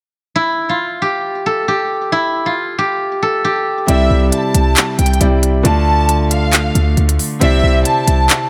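Wistful yet triumphant, this short trap cut at 136 BPM in a half-time feel opens with a ringing, silvery steel-string zither, picked with fingerpicks and softened by a low-pass filter and digital delay, playing the melody on its own from 0.4 seconds. At 3.9 seconds the track drops in over Cadd9 and Dm chords: a punchy, heavy 808-style bass with a fast attack, a crisp electronic trap kit of handclaps and hi-hats, a brilliant grand piano with deep bass and long sustain, and a lush, bowed violin section carrying a smooth second line through delay. The zither drops out at 5.8 seconds, leaving the piano, violins and up-front bass and drums under a light reverb.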